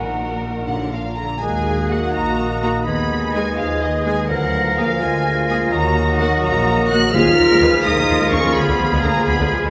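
Restless and stormy, this fast romantic orchestral excerpt in Eb minor moves at 84 BPM in 6/8, with a rich, lightly vibrato studio violin section carrying the melody over an airy flute, a lush background violin section, intense violas, ringing fingerpicked harp arpeggios, focused double basses and distant cellos, joined by mellow French horn chords from 0.7 seconds, clarinet, oboe and bassoon from 1.4 seconds, and a very quiet hard-mallet timpani stroke at 7.1 seconds, all set in a wet scoring-stage reverb as the harmony darkens toward a diminished chord.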